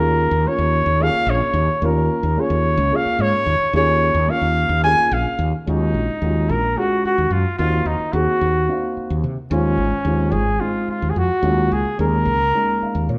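Jazz in 7/8 with an intense, slick mood, cut from a longer piece and played live in one room with a wet stone reverb: a breathy, close-miked trumpet with scooped notes leads up front with a solo from the start to 5.7 seconds, a round, hollow-body fretless electric bass sits forward beneath it, and a dark, boxy baby grand piano with short sustain comps mellowly before slipping in a brief fill at 12.5 seconds.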